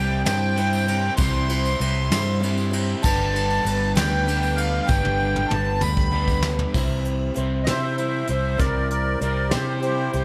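Folk rock and heartland rock in a jangly, open-road 6/8, led by a reedy, sweet accordion with light tremolo tuning and tape echo up front, over a shimmering, octave-doubled twelve-string acoustic guitar, a crunchy double-tracked overdriven guitar riff, a round, dark fingered bass and a soft brush kit with a fat snare and punchy kick, while a jingly tambourine sits distant in the background until 6.5 seconds, a drum fill arrives at 4.9 seconds, and the accordion takes a solo from 6.7 seconds in this cut from a longer piece.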